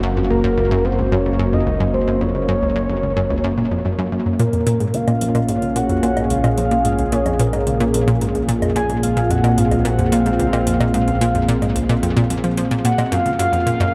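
Drenched in a huge, echoing reverb, this cut from a longer piece of mysterious, expansive sequencer-driven space music in Bb minor moves at 110 BPM in a straight 4/4, where a bright, up-front analog pluck riff with chorus and delay rides over a fat, thick analog bass and a sweeping, warbling resonant pad holding sustained chords from Gb to Bbm7, while a soft, dark octave-layered synth lead with phaser and vibrato carries the melody from 0.3 s and overdriven electronic hi-hat and woodblock with metallic hats join at 4.4 s.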